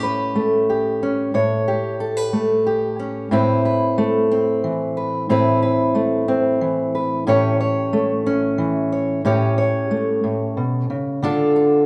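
A fingerpicked steel-string acoustic guitar plays alone, up front, dark and woody with the dull tone of old strings, in a bittersweet, wistful folk fragment in a straight 6/8. It moves from A7 into Amadd9 at 3.3 s and back to A7 before settling on Dm at 11.2 s, all bathed in a wet, large studio reverb that gives the live performance in one room a spacious glow.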